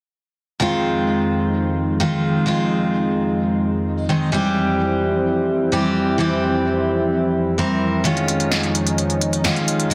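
Powerful and anthemic, this festival progressive house cut in F minor moves at 129 BPM, with an up-front picked steel-string acoustic guitar carrying the accompaniment through a vintage sampler grit and dub echo, finger squeak audible, over a lush, detuned sawtooth unison pad with chorus and a filter sweep holding sustained chords from Fm7 through C/F to Dbadd9/F. At 8.1 seconds a punchy big-room dance kit of snare and crisp hi-hats enters, its hats, snare and room low-pass filtered. A moderate recital-hall reverb surrounds it all in a dense, heavily limited modern master.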